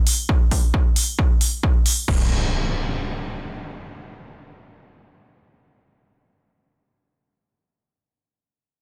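A straight 4/4 pulse at 134 BPM drives this intense, hypnotic peak-time techno fragment, with a layered, tape-warm drum kit of crash cymbal and smooth hi-hats pumping under sidechain from 0.1 seconds, a punchy, up-front electronic kick landing at 0.3 seconds, and a forward electronic impact taking over at 2.1 seconds, all set in light reverb with a small-room character and a dense, heavily limited modern master.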